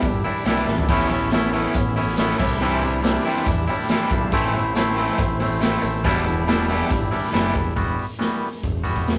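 Restless and cool, this indie rock excerpt in E minor moves at 140 BPM with a raw garage drum kit that sounds gritty and punchy, a drum fill arriving at 0.7 seconds, while a growling, overdriven bass holds the low end with a round tone. A clean, twangy electric guitar riff sits up front beside a bright, compressed fuzz guitar riff that stops around 7.6 seconds. A silky, very quiet string machine sustains vintage ensemble chords until about 7.7 seconds, and the twangy guitar, bass and drums carry on into a brief new section, all within a rough rehearsal-room sound.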